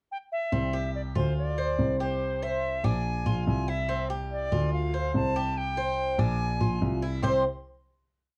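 Cuban son in the guajira vein, this short, complete piece moves at a brisk pace with a relaxed, warm mood over a straight four-beat feel. A silver concert flute opens the pickup at 0.1 seconds, its reedy, pure tone carrying vibrato and a soft attack as it states motif-based call phrases, set in a plate reverb. At 0.5 seconds the montuno vamp begins. The Cuban tres picks an arpeggiated guajeo on doubled, metallic strings, some doubled at the octave. A dark, mellow baby grand piano sits up front, playing a tumbao bass line with short sustain that anticipates the chords. The harmony shifts between C and Bb7 before settling on a final chord at 7.2 seconds, all within a lightly reverberant, dark production.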